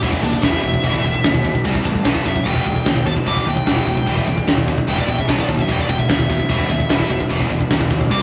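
A smooth, dark overdriven lead guitar carries a solo melody across this short heavy metal excerpt, picked high over a dense, epic backdrop. Up front, a big acoustic rock drum kit hits with a punchy kick, a medium-tuned snare and crashing china and crash cymbals, its sound mid-forward with a rolled-off top. Two picked rhythm guitars drive the riff beneath it, one a bright, scooped high-gain tone sitting very quiet in the mix, the other a tight distorted part tucked into the background. A growly fuzz bass, overdriven and heard both direct and amped, anchors the low end from the background. The harmony moves from E5 through C5 and B5 to an E minor chord at 2.5 seconds before returning to B5 and E5. The playing feels rough and immediate, like a rehearsal-room take with little reverb, giving the whole a heavy, straight-ahead weight in common time.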